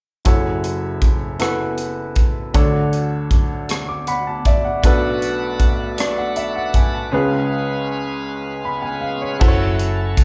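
A woody, intimate upright piano with audible action noise opens this fervent, solemn slow gospel passage in 6/8 at 52 BPM in F# minor, joined by a polished fusion drum kit with punchy kick, bright cymbals, hi-hat and rim click; the piano takes a fill at 3.7 seconds before a shouting, lightly overdriven tonewheel organ with key click and slow rotary speaker brings sustained chords at 4.8 seconds, and after a break a round, dark hollow-body electric bass arrives at 9.4 seconds as the F#m7, Dmaj7, Bm7, C#7 progression returns to F#m7, the band heard playing together in one room with moderate studio reverb.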